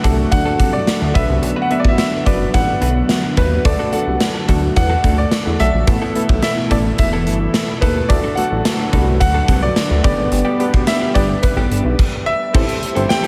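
A straight 4/4 groove from a gated 80s drum kit, with tight kick, bright cymbals, tambourine and a bright stone-room sound placed up front, drives this urgent, moody 1980s-style pop excerpt alongside a glossy, chorused pulse-width synth bass with a plucky filter attack. Round, detuned analog keys with a filter sweep and a shimmering, slow-attack pulse-width pad sit in the background as a very quiet, clean, compressed direct electric guitar picks a riff, while a clear grand piano with short sustain and analog delay carries the melody from 0.3 s. A huge ambient reverb soaks the whole mix in a dreamy haze as the chords move from D through Bm, Asus2 and G to a closing Am7.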